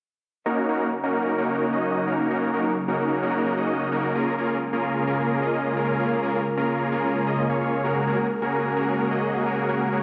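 A moderate hall reverb with a long tail surrounds this euphoric, emotional EDM passage, cut from a longer piece and moving at 130 BPM in 4/4 with a straight feel in E-flat minor. Huge, bright supersaw chords open the passage at 0.5 seconds, playing an up-front riff with a fast attack, their detuned sawtooth unison sounding full-bodied through a low-pass filter and tape echo. At 1.0 seconds a thick, lush unison pad enters softly beneath, holding sustained chords with a slow attack, long release and chorus. A filter sweep on the analog synth pad runs through the whole passage, and both parts continue to the end at 10 seconds. The harmony moves from Ebm7 to Bbm7 and settles on Gbadd9.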